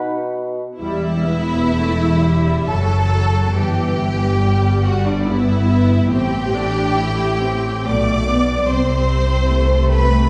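A slow, rubato pulse in three moves this elegiac, melancholic excerpt from a romantic symphonic movement, heard from further back in a reverberant scoring stage. A lone, mellow bassoon sounds a single low B in the opening 0.6 seconds, roomy and distant yet close at hand. At 0.8 seconds the strings enter together and carry the rest of the passage: a lush violin section sings the melody high above with a focused, vibrato-rich tone, while a second, clearer violin section traces a line an octave lower. Violas fill the middle with an even, smooth-topped accompaniment, and below them the cellos sit in the background as the double basses anchor the bottom, bowed with only light vibrato. The harmony drifts from a lush Gmaj13 over E through E minor and A minor colours, lending the brief fragment a sorrowful, suspended air.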